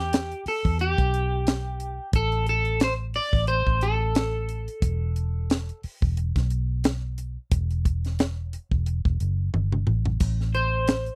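A dry, close 1970s-style studio sound frames this smoky, soulful straight-eighth soul blues cut from a longer piece in E minor at 89 BPM, where a twangy, slightly broken-up electric guitar carries the melody with lush chorus and slapback echo from 0.0 to 5.8 seconds and returns briefly at 10.5, over a dark, round, foam-muted fingered bass and a tight funk kit that brings bright cymbals and a high-tuned snare and plays a drum fill at 9.5 seconds.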